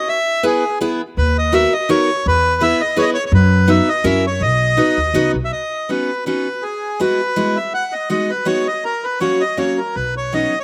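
A reedy bandoneon opens this nostalgic, charming musette excerpt in B major at 164 BPM in a lightly swung, rubato 3/4, carrying the melody over bright, full-bodied picked steel-string acoustic guitar accompaniment, both touched with slapback echo, while a woody, thumpy pizzicato upright bass on gut strings plays from 1.2 to 5.5 seconds and returns briefly at 10.0 seconds, all heard up front in a dry outdoor sound.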